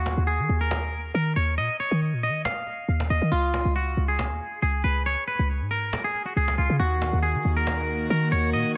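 Over a half-time trap pulse at 138 BPM in Eb minor, a woody, live-room cajon with faint snares and a gritty, lo-fi sampler texture sits beneath a punchy, tight 808-style bass that hits up front with a fast attack and a noisy edge. A clean, twangy electric guitar carries the melody, fingered and close, bathed in spring reverb and digital delay, giving this short, dark, hard-hitting clip its main voice. At 6.8 s the harmony settles on an Eb minor chord as a soft, bowed string section enters, sul tasto and distant, floating in a pure ensemble haze until the cut at 8.8 s.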